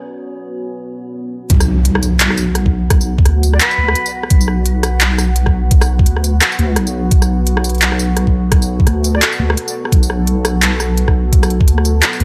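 Half-time drum and bass with a cinematic, spacious mood opens on a deep, moody, detuned ambient pad carrying vintage sampler grit and sidechain pumping; at the drop at 1.5 seconds, background impact-and-swell effects, a knocking, tape-warm electronic kick, a crisp industrial kit of handclaps, hi-hat, rim click and tambourine, and a compressed, wobbling sine-and-triangle bass arrive up front, while a reedy, airy jazz flute with vibrato and tape echo briefly surfaces at 3.5 seconds in a dry mix.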